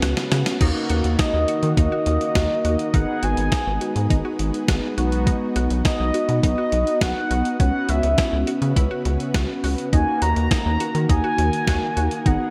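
A gated 80s drum machine with a thumpy kick and gated-reverb snare drives this cool, nocturnal synth-pop excerpt at 103 BPM in straight 4/4. It opens with a short drum fill beneath a rubbery, bouncy square bass, brassy detuned synth brass, a very quiet ethereal pad, and a squelchy resonant blip pluck arpeggiating in the background with phaser and tape echo. From 1.2 seconds, a horn-like synth lead with vibrato carries the melody over chords moving from F#sus4/C# through D#m, G#m7 and B.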